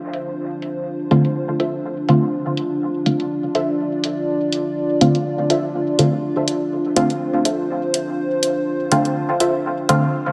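A dark analog pad opens at 0.0 s with sustained chords on D minor 7, built from detuned square, sawtooth and triangle waves with a sub octave, a wave-folded edge and a slow attack, sitting up front and thickened by chorus. An overdriven electronic hi-hat joins almost at once, layered and low-pass filtered, set against a swung 16th feel in 4/4 at 123 BPM. At 1.1 s a muted, deep chord stab arrives in the lower register, its detuned sawtooth plucked by the filter with a fast attack and decay, colored by chorus and phaser and trailed by dub echo. A second, quieter stab riff enters at 1.6 s in a higher range, short and sawtooth-based, with its own filter sweep, chorus and echo. A moderate, lush hall reverb gives this dub techno fragment a cavernous, meditative atmosphere in D minor.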